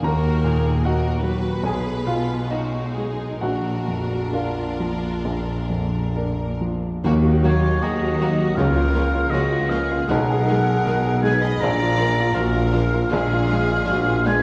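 A clear, up-front grand piano carries the melody through this tragic, passionate romantic excerpt for piano and orchestra in 4/4, moving with rubato at 64-82 BPM over an Eb minor progression, joined by lush, distant violins, a smooth second violin line, very quiet violas, cellos and double basses in the background, and then from 7.0 s by a dark French horn section, a quiet tuba, barely audible hard-mallet timpani and a roomy oboe line from 7.4 s, all set back in a scoring-stage reverb.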